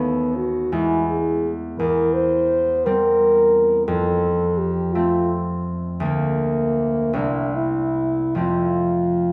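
A mellow, distant French horn carries the melody up front over a bright, ringing, fingerpicked concert harp in this serene romantic classical duo in F major, unfolding in a slow, rubato 6/8 at 46-59 BPM as the harmony drifts from B7/D# through E and C7/E to F at 3.9 seconds, then moves through Bb/D and C7 before settling on F at 8.4 seconds, set in a wet recital hall reverb.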